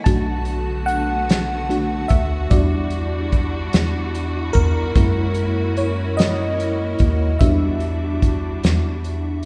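Slow R&B in six-eight at 49 BPM, this yearning, late-night excerpt in E minor is cut from a longer piece and moves through Bm7, Em9, F#7 and back to Em9 across its 9.5 seconds. An FM electric piano layered with a soft pad takes the lead as a solo from the start, its dreamy, detuned tone sitting up front with chorus and tremolo shimmering through its decaying notes. Beneath it, a dark studio string section holds sustained chords with woody, bowed vibrato, placed distant and low in the mix. From 0.1 seconds a rubbery square-wave bass adds a hollow, bouncy pulse with a resonant filter pluck, while a soul drum kit of hi-hat, fat snare and punchy kick sits close and smooth, its top rolled off. The whole arrangement blooms in a wet concert hall reverb that gives the late-night mood a spacious, churchlike glow.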